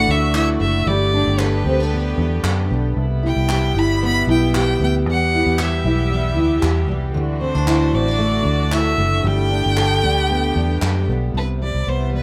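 A round, up-front muted electric bass anchors this heartfelt, carefree acoustic pop piece in G major at 115 BPM with a light swing, while a dark, full-bodied double-tracked fingerpicked steel-string guitar, complete with finger squeak, fills out chords like Dadd9, Gadd9, Cmaj7 and Em. A clear, focused violin with vibrato sings the melody from a distance over a soft-attack, floating string section, and hollow group handclaps enter at 0.3 seconds and drop out at 10.9 seconds. Light reverb and small room ambience give the rough home-demo mix an intimate feel in this short cut from a longer piece.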